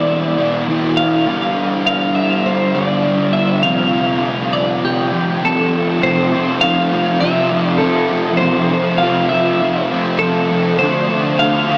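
Hazy, dreamy rock fragment in which an up-front, double-tracked fuzz guitar drives a low distorted riff with ensemble chorus, while a bright, twangy, compressed twelve-string electric guitar plays a clean picked melody through tremolo and diffuse ambient delay, the whole mix soaked in a huge wet reverb with a small-speaker sound as the chords shift from E5 and G5 to Fadd9 and finally Dm7 at 10.8 seconds.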